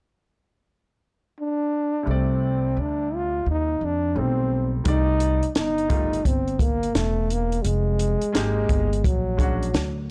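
Smoky and cool, this jazz-hop fragment of a longer piece opens with a mellow, breathy trombone solo full of vibrato and scooped notes at 1.4 seconds, soon joined by a clear upright piano with short sustain and a plucked, woody upright bass with tube saturation, before a compact cocktail drum kit with a punchy kick and high-tuned snare arrives at 4.9 seconds, the whole set in a small room with the dry, gritty character of cassette tape.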